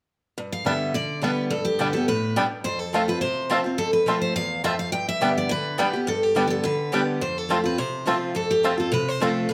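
Driving and joyful, this bluegrass excerpt races along at 211 BPM in a straight 4/4, shifting between G and F chords in G mixolydian. A bright, full-bodied steel-string dreadnought carries the melody up front alongside a twangy, percussive banjo played with fingerpicks, while a boxy archtop guitar, also up front, picks the accompaniment. From 1.8 seconds a woody, double-strung mandolin adds stabs, all captured with close, detailed microphones in a large studio with moderate reverb.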